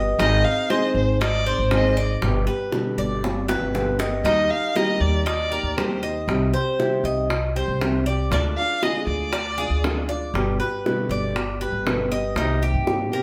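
A straight 4/4 pulse at 118 BPM drives this warm, danceable Cuban son and guajira passage in C minor, cut from a longer piece. Round, low-tuned bongos played with hard hands sit in a live room and break into a fill from 3.2 to 4.3 seconds. Up front, a woody, thumpy upright bass with gut strings plucks the low end, while a bright, metallic Cuban tres picks arpeggios on its doubled strings, some tuned in octaves. A small, fingerpicked nylon-string guitar fills out the accompaniment, its finger squeaks audible. A single dark, bowed violin carries the melody with vibrato from 0.2 to 10.1 seconds over a progression moving from Ab through G, Eb, Cm, Ddim and G again before settling on Cm7. The band plays together in one room, bathed in a wet studio reverb.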